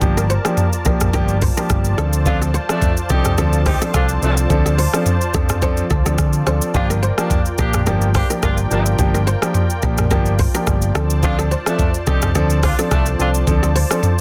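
The groove rides a lightly swung sixteenth-note feel in four, driven by an up-front, produced afro-pop kit with a knocking kick, smooth hats, rim clicks, shaker and toms, and a snare pushed into soft clipping. This mellow, smooth afrobeats passage, cut from a longer piece, rests on a dark, round, punchy fingered electric bass and a polished, present baby grand piano carrying the accompaniment over Gm7 and Dm7. Behind them sits a detuned sawtooth analog pad with a soft attack and chorus. A bright, fingerpicked kora plays a crisp riff through digital delay from 0.2 seconds, set back in the mix. A distant, roomy horn section enters at 2.3 seconds with a mellow second line touched by light vibrato, and the whole is dry and dense under a heavily limited modern master.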